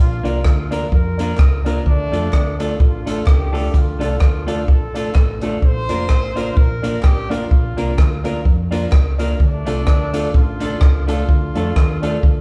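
A live-room sound with moderate large-studio reverb frames this joyful, cheerful ska passage. An airy, swinging big-band drum kit sits up front with a punchy kick, hi-hat and rim click, over a round, dark hollow-body fingered bass. A clean, picked semi-hollow guitar and woody upright piano stabs fill the middle, while a distant, roomy horn section carries the melody with light vibrato, hollow group handclaps sit in the background, and the harmony shifts from Bb to Dm at 9.4 seconds.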